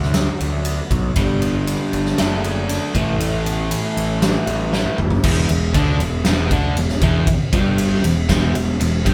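A straight 118 BPM pulse in 4/4 drives this cathartic, bittersweet quiet-loud alternative rock excerpt, where a hollow, clean semi-hollow guitar plays background arpeggios until 5.2 seconds over growly, overdriven fuzz bass and a huge, up-front arena kit with a punchy kick, fat snare and bright cymbals, a compressed overdriven guitar riff joins at 1.2 seconds, and after a drum fill a thick fuzz guitar adds its distorted riff from the background as the chords move from D6 through G and Asus2 to Em7, all in a live room with light reverb.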